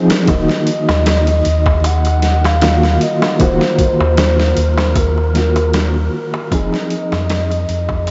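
Dark and cinematic, this short trip hop excerpt drifts at a lazy swung pace, opening on a reedy electric piano with fast tremolo before a gritty, pitched-down boom bap kit with a thumpy kick, a round sub bass up front and a darbuka struck with hard hands in the background settle in. A pure, breathy sine lead glides with vibrato, chorus and dub echo over Ebmadd9 moving to Fm7 at 6.5 seconds, while a very quiet wind-like noise texture joins at 1.8 seconds. The dreamy, reverb-soaked mix carries vinyl crackle and a muffled top end, and it fades out from 4.4 seconds.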